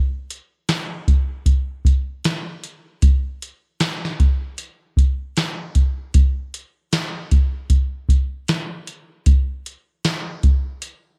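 Dry and close, this short cut from a longer indie pop piece carries a lonely, mellow mood. A soft vintage rhythm box sits up front from 0.3 to 11.0 seconds, its deep kick, crisp snare and metallic hi-hat shaded with analog tape warmth and the character of a large room it was re-recorded in. The beat has a gentle swing on the sixteenths.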